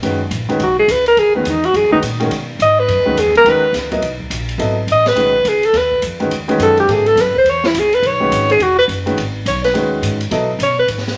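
A warm, up-front grand piano, woody pizzicato upright bass and an acoustic drum kit with dark cymbals, a high-tuned snare and a boomy kick open this cool, searching swung modal jazz fragment. At 0.6 s a breathy, mellow alto saxophone joins them up front, soloing with subtone, vibrato and scooped notes in a moderate large studio reverb.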